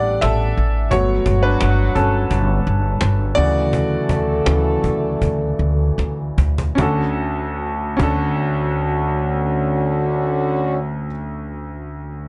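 A concert grand piano anchors this hopeful, anthemic piano-driven pop excerpt, its intimate, up-front tone carrying deep bass and audible action noise. The piano takes a featured solo passage through the first 6.8 seconds as the music slows, moving from Asus4 to Gmaj7 and then Dmaj7 before a new section begins. Beneath it, a pizzicato upright bass with steel strings sounds thumpy and woody, sitting close in the mix. A compressed, saturated cajon with faint snares plays a fill just before the section change. A mellow French horn section adds a distant, roomy second line in classical style, with light vibrato, stopping at 10.8 seconds, while light reverb and studio ambience give the dark, warm production a sense of space.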